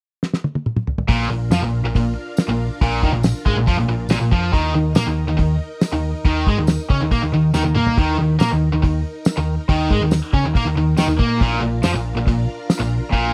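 Swaggering and sunny, this dry, close classic rock cut opens with a thuddy, cloth-damped drum fill before a cranked, overdriven stack guitar and a tight, bright distorted guitar lay down riffs at 1.1 seconds over a round, punchy hollow-body bass, with a shimmering vintage string machine hovering in the background and a jingly, distant tambourine joining at 1.5 seconds.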